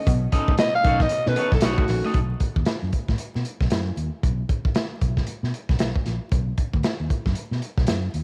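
A breathy, raspy alto saxophone takes an up-front solo over a B9 chord for the first 2.1 seconds of this playful, gritty funk fragment, joined by a very quiet clean guitar riff, woody upright piano stabs with audible action noise, and a twangy, slightly broken-up guitar. When those parts drop out by 2.2 seconds, the punchy fingered bass and a saturated, dark breakbeat kit with a tight kick carry the groove on a B5 chord through to 8.2 seconds. Cassette tape grit, vinyl crackle and light studio reverb give it a homemade, intimate feel.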